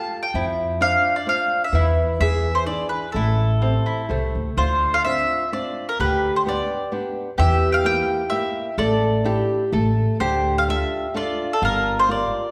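A 3/4 at 128 BPM with a straight feel carries this wistful, romantic Italian folk serenade, cut from a longer piece. Two acoustic mandolins pick on double strings: the lead carries the melody, bright and woody and up front, while the second mandolin plays a mellow, round line beneath it in a lower range. A flamenco guitar, fingerpicked in flamenco style, adds warm accompaniment. An upright bass enters at 0.3 s with dark, thumpy pizzicato on gut strings, sitting up front alongside the lead. The music opens in A minor and moves to D minor at 4.6 s, with the harmony passing through chords such as E7, Edim and Gm7. Everything sits in a lush church or concert-hall space with a reverb tail of about 1.7 seconds.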